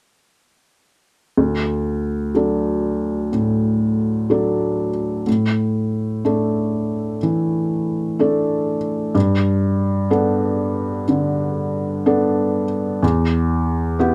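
Classical piece, tender and hopeful, taken from a longer work and moving at a rubato 62 BPM in 4/4 in D major. A felt-muted upright piano, mellow and intimate with audible action noise, sits up front from 1.4 to 14.1 seconds and plays an accompaniment between D2 and A4 through D, Asus4, Gadd9 and Em. Close, detailed microphones and light reverb keep the sound soft and near.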